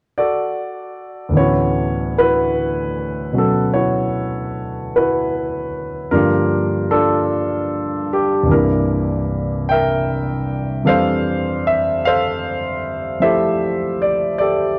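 Intimate and late-night in mood, this jazz ballad moves at a slow 51 BPM in 4/4 with a swung eighth-note feel. A lone concert grand piano carries everything, entering at 0.2 seconds and playing until 14.8 seconds across a range from C2 to G5. Its tone is warm, natural and up front, with a deep bass. The harmony settles on D before blooming into Dmaj13, then moves through Gm7 and C9 to rest on Fmaj13. A moderate plate reverb with a long 3.4-second tail surrounds the piano, and the overall production is dark and warm. The recording is a short excerpt cut from a longer piece.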